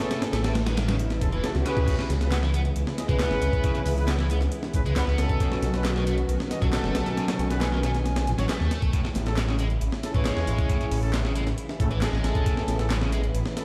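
Funky and energetic, this breakbeat excerpt at 136 BPM in C# minor sets an up-front, gritty sampler-style breakbeat kit with a thumpy kick against a faint overdriven analog drum machine's handclaps and hi-hat, while a thick, menacing detuned saw bass sits forward, a biting double-tracked electric guitar riff and warm brass stabs carry digital delay, veiled con sordino strings pump with sidechain in the background, and a riser from 0.7 to 1.9 seconds leads into the drop, all heard as if played on a big system in a bare stone room.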